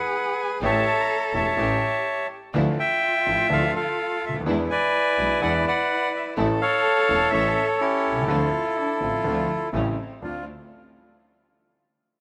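Tango in a sultry, passionate mood with a rubato feel, cut from a longer piece, where an up-front, reedy bandoneon carries the melody over a bowed, nasal cello second line that opens with it at the start. From 0.6 seconds a clear grand piano with deep bass and short sustain plays the accompaniment, a bowed double bass with light vibrato and an intense, smooth top holds the bass, and a rich string ensemble with vibrato adds stabs in the background. The rough home demo mix has light studio reverb, and the chords move through A7, Dmadd9, E7 and A before settling on Dm7.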